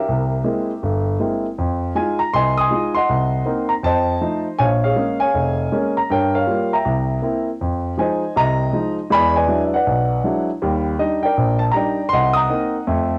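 Solo jazz piano with a late-night, cool mood, swinging at 159 BPM in 4/4 on a warm concert grand with deep bass, placed up front and run through cassette tape in a home recording with moderate studio reverb. Across this short cut from a longer piece, the harmony moves through altered and half-diminished colours such as C7b13, Cm7b5 and Gm7b5 before a second section at 7.6 seconds opens onto E9 and Ebmaj7. The piano spans from F1 up to Eb6, filling the 13.2 seconds on its own.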